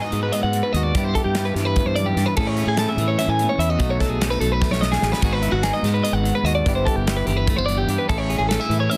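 A dense, heavily limited modern mix with light reverb frames this playful, wistful math rock and midwest emo excerpt in 7/8, where a bright, up-front twelve-string electric guitar picks plate-reverbed arpeggios over a warm clean electric guitar's accompaniment, a growly fuzz fingered bass and an airy, polished studio drum kit with a punchy kick and medium-tuned snare that plays a fill at 4.6 seconds, all moving through G#m7, Cmaj7/G, Amaj7 and B7.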